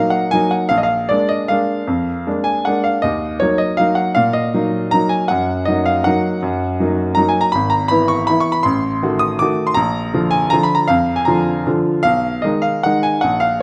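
A clear, present baby grand piano plays a nostalgic, wistful classical waltz alone in Eb minor, its rubato 3/4 lilt moving at roughly 145-170 BPM from Ebm through Bb7, a turn to E/G# and an Adim7 before settling on Abm/Cb, spanning G#1 to Eb6 up front in a moderate recital hall reverb, tuned to A4 = 437 Hz, in this 13.6-second excerpt cut from a longer piece.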